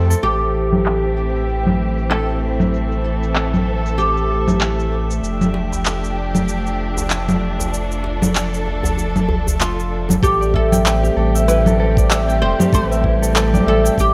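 Organic downtempo in A minor at 96 BPM, this meditative, mystical passage is cut from a longer piece and moves with a gentle swing on the sixteenths in 4/4, with chords shifting from Am7 to F69 at 5.2 seconds and back to Am7. A deep, round sub bass sits up front with tube saturation and sidechain pumping, beneath a dark, veiled string section playing muted sustained chords with vibrato, its low-pass filter sweeping across the first ten seconds. Overdriven electronic cabasa, congas and handclaps push forward in the mix under a filter sweep of their own, while a tight, cracking djembe sits in the background from 5.5 to 10.2 seconds. A woody, fretless oud carries the melody with digital delay, and a ringing, fingerpicked Celtic harp adds arpeggios coloured by 12-bit sampler grit and tape echo, returning at 10.2 seconds when a knocking electronic kick drum arrives. Throughout, a glassy texture of drifting overtones hovers softly in the background, treated with chorus and its own reverb, and the whole mix carries a light reverb.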